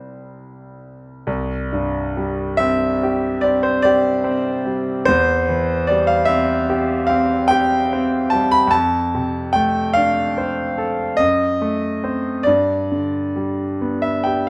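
A clear concert grand piano plays alone from the start, a serene, nostalgic romantic nocturne in C major, moving at a slow 48 BPM in dotted quarters through 9/8 with uneven, rubato timing and tuned slightly low to A4 = 437 Hz. Its natural tone sits up front, with deep bass and long sustain across a range from C2 to B5, softened by light reverb. The harmony drifts from C through C/E and Dm7/F to a tense F#dim7 at 11.2 seconds before settling on G at 12.5 seconds, where this portion of a longer piece breaks off at 14.5 seconds.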